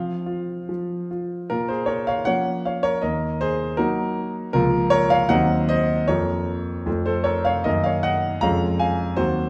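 Moving at 78 BPM in 2/4, the rhythm breathes freely, with uneven beats and rubato that give the phrasing an elegant, dramatic sway. This is a classical-period piano sonatina in Bb minor, tuned to A4 = 442 Hz and cut from a longer piece, heard here as a solo for concert grand spanning Db2 to Bb5. The instrument sounds up front and smooth, with a deep bass and a vintage character. A brief opening passage sits on F5 before a new section begins at 1.5 s and runs to 9.5 s, moving through Bbm, Ebm and inverted chords such as Bbm/Db and Cm7b5/Eb, then reaching F before settling on Db/F. A wet recital hall reverb with a 1.4-second decay surrounds the piano and adds a sense of space to its elegant, dramatic character.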